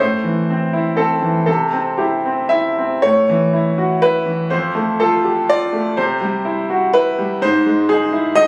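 A clear, boxy grand piano with short sustain sits up front and plays alone through this intimate, hopeful neoclassical minimalist excerpt in 3/4 at 123 BPM with a rubato feel, opening on A minor and moving into a new section at 3.0 seconds, with light reverb, studio ambience and compression from a phone recording made in the room.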